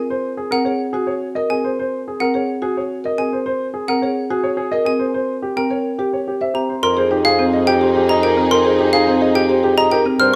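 Propulsive and hypnotic, this minimalist classical pattern piece moves at 107 BPM in a straight 3/4, cut from a longer work and set first in Ab mixolydian before turning to F minor at 6.8 s. A clear, worn baby grand piano carries the melody from the opening, its open tone ringing with long sustain up front. Around it, a marimba with soft mallets spins mellow, round arpeggios from woody rosewood bars, while a xylophone played with plastic mallets adds dry, sharp, bright arpeggios higher up. At 6.8 s the harmony shifts to Fm11 as a rich chamber string section enters with bowed, focused sustained chords touched by vibrato, and a warm solo bassoon takes the bass line with light vibrato and a smooth top. The close, detailed microphones capture every mallet stroke in detail, set inside a moderate large studio reverb.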